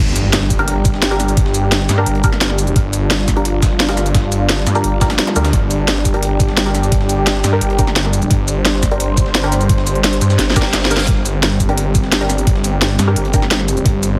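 Tense and mechanical, this excerpt of dark technical drum and bass at 173 BPM in G minor hits a drop from the start, with a snarling, detuned sawtooth bass growling up front through distortion and sidechain pumping beneath a moody analog pad that also pumps. A knocking, tape-touched electronic kick sits in a small room alongside an up-front drum and bass kit of cracking snare, crisp hats and shaker, while a very quiet, gritty breakbeat layer with a high-tuned snare adds texture and muted dub chord stabs flicker through phaser, chorus and delay. Quiet electronic effects mark the opening impact and a zap, and a drum fill from 10.4 seconds rides a reverse cymbal, all under a heavily compressed, radio-like sound with light reverb.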